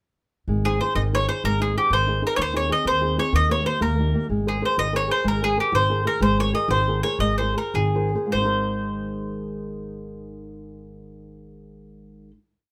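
An Italian folk serenade in 6/8, sunny and lively, set in Ab major at a tempo between 95 and 127 BPM, this short complete piece slows from 6.2 to 8.3 seconds before settling on a final chord held until about 10.9 seconds. Up front, a bowl-back mandolin carries a picked, motif-based melody in song-like phrases, its double strings giving a warm tone. Beneath it, a dark, boxy flamenco guitar is thumb-plucked in an oompah pattern of bass notes and chord figures with audible finger squeak, while a woody pizzicato upright bass with steel strings plays root and fifth on the main beats, all in a light reverb.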